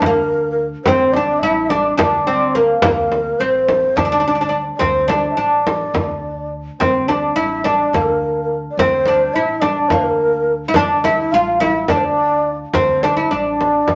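Soulful and longing, this Turkish makam ensemble piece in D makam ussak moves in a straight 7/8 at 212 BPM counted in eighths, with a deep, woody, plectrum-plucked fretless oud carrying the melody up front, an airy low ney with vibrato and a crisp attack tracing a second line above it, a dark, thumpy pizzicato upright bass on gut strings sitting quietly beneath, and a large frame drum struck with hard hands sounding close and dry, the whole ensemble set in a wet studio reverb.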